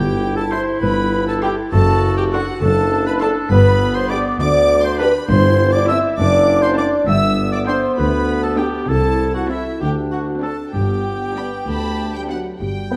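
Set in a moderate scoring-stage reverb, this playful, whimsical cinematic cue in G major moves at 67 BPM in a straight 6/8, its quirky, mischievous mood carried by a smooth, bowed violin melody from 0.5 s over lush viola accompaniment, while oboe, a distant clarinet, a hollow silver flute and a second violin section carry second lines above a mellow, tight French horn section holding sustained chords, with clear tuba, cello and double bass sections anchoring the bass, a woody soft-mallet marimba joining the melody at 11.4 s and a dark bassoon appearing only at 12.9 s in this fragment cut from a longer piece.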